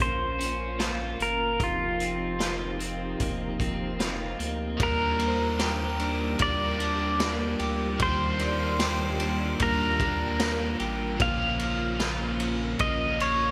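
Dream pop, dreamy and ethereal, cut from a longer piece: an up-front, clean pedal steel guitar carries the melody with slide, volume swells and delay over warbling, organ-like ensemble-string chords, slightly broken-up electric guitar arpeggios and a round, deep analog bass. A raw garage drum kit with a boomy kick, gritty saturation and gated reverb plays hi-hat, snare, ride and tambourine, and at 4.8 s, as the harmony moves to Ebmaj7, a cranked stack guitar enters in the background with overdrive and harmonic tremolo. A shimmering FM bell with tremolo and a long release glints from 5.3 s to 11.0 s, and the mix sits in a moderate plate reverb with bright 1980s-style digital production.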